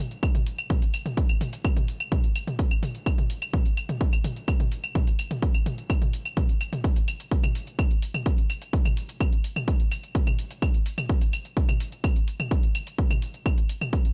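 The deep house drum kit opens the track almost at once, its claves, metallic hi-hats and toms set in studio reverb, and the heavy electronic kick joins it a moment later, sitting up front with a tape-warm, small-room weight. This cut from a longer techno piece runs in a straight, hypnotic 4/4 groove with a cinematic mood. The two layered, produced drum parts stay together throughout, with the kit placed more quietly behind the kick.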